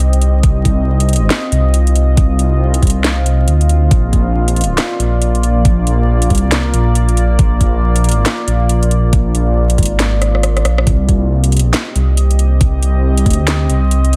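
Deep dubstep in a swung half-time feel, meditative and brooding, where a rumbling, detuned saw bass and a knocking kick sit up front beneath a warbling, mellow ambient pad of sustained chords with chorus, while a garage kit of cracking snare, metallic hats, rim clicks and handclaps plays throughout, with a drum fill at 10.2 seconds, all under vinyl crackle and a dense, heavily limited master.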